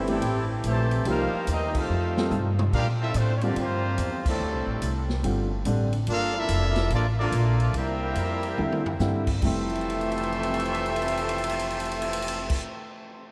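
A clear, up-front trumpet section carries the melody from the first moment of this brassy, swinging big band jazz excerpt at 144 BPM in F major, over a distant, roomy trombone second line, a woody pizzicato upright bass and tight, very quiet saxophone chords that stop at 2.7 s, while a background grand piano accompanies and drops out between 5.9 and 8.6 s, and a natural-sounding drum kit with a punchy kick adds fills around the band's accents, heard in a vast, echoing cathedral space.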